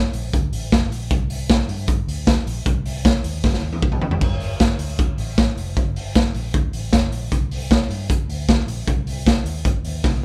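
A raw garage drum kit drives this jangly indie pop excerpt at 154 BPM in a straight 4/4, its punchy kick, medium-tuned snare, dark cymbals and toms sitting up front with a gritty, saturated sound and a pumping small-room character, breaking into a fill from 3.4 to 4.2 seconds. Beneath it, a vintage muted fingered electric bass stays in the background, round and foam-muted through an amp, moving between F1 and G2. The mood is wistful and bittersweet, with little reverb and the rough feel of a home demo mix.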